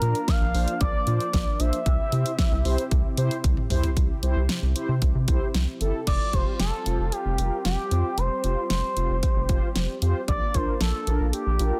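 Synth-pop with a bright, upbeat mood, this 114 BPM cut from a longer piece moves in a straight 4/4 over a progression of Bb, C, Fsus2 and back to Bb. A smooth, nasal synth lead carries the melody with vibrato, chorus and tape echo, its sawtooth-and-triangle tone sounding expressive yet mellow. Beneath it, a round, detuned synth brass plays sustained accompaniment with chorus, while a bold analog pad holds soft-attack chords in the background, its sawtooth layers shaped by a filter sweep. Up front, a rubbery, hollow square bass gives a bouncy, resonant filter pluck that decays into a dark low end, partnered by an electronic, layered pop kit with a punchy kick, fat snare, hi-hat, crash and toms. A drum fill from 3.4 to 4.0 seconds stands out, and the whole piece sits in light reverb under a dense, heavily limited modern master.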